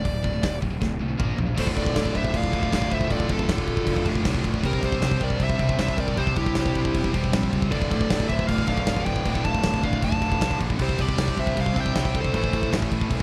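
A dark, high-gain lead guitar opens this aggressive heavy metal fragment over picked rhythm guitars, a growly fuzz bass and a punchy, up-front rock kit with bright cymbals, and after a drum fill a second lead line, another double-tracked overdriven guitar and a very quiet, earthy chamber string section holding sustained chords join in at 1.6 seconds as the harmony moves between D minor and C.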